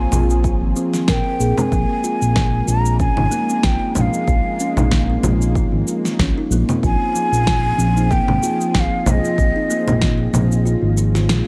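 A breathy, hollow bansuri carries the melody in this short cut from an organic downtempo piece, sounding with vibrato and tongued notes through a digital delay until 10.3 seconds. Around it, a woody kalimba rings out mellow arpeggios through tape echo, while a detuned analog pad holds evolving sustained chords in the background, treated with chorus and sidechain pumping. A smooth, dark synth bass sits up front with ring-modulated sawtooth and square tones, pumping beneath chords that move from Fm to Bb7(no3) and on to Fm7. At 94 BPM in 4/4 with a light sixteenth-note swing, electronic congas, cabasa and a fat snare sit up front with a tape-warm character from a small room, joined by a deep electronic kick that drops out at 10.7 seconds before a band accent at 11.3 seconds. The mood is mystical, wrapped in a generous digital ambience.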